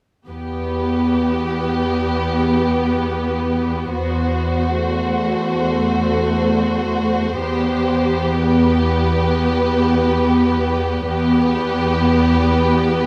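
At 0.3 s a string orchestra enters together in a solemn, melancholic slow romantic movement, cut from a longer classical piece. A smooth, even violin section carries the melody above a second violin line that sounds lush yet distant, while a focused, warm viola section supplies accompaniment and a rich cello section holds the bass up front. Vibrato colours every section, and the close, detailed recording adds a light reverb as the harmony moves from Em to F#m7b5/E and returns to Em at 7.4 s.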